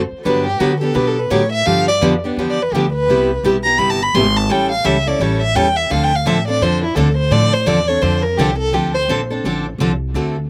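An expressive bowed violin with vibrato, portamento and a slapback echo sings up front from 0.2 seconds in this bittersweet, fiery excerpt of D minor gypsy-jazz swing at 170 BPM, backed by a bright, full-bodied picked jumbo steel-string guitar moving through Gmaj7, G7, Cmaj7, A7 and Dm7 and a dark, woody, thumpy gut-string upright bass played pizzicato, all captured dry outdoors.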